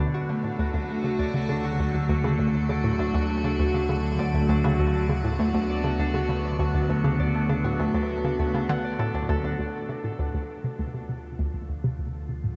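Drenched in a huge, wet reverb with a long tail and softened by a cassette-tape haze, this hypnotic, mysterious stretch of ambient, sequencer-driven space music is cut from a longer piece in a straight 4/4 feel. An evolving wavetable pad holds morphing, bright sustained chords up front, its slow attack and long release colored by phaser and its own reverb. A fingerpicked Celtic harp rings out acoustic arpeggios through tape echo, while a hollow, bouncy square-wave pluck with detuned, wave-folded edges and a noise layer repeats a low riff under chorus and tape echo. Beneath them a round, deep analog bass sustains a single dark note. At 9.6 s a second section begins, the harmony moving from a D chord to D minor as a filter sweep moves across a synth arpeggio sound through to the end at 12.6 s.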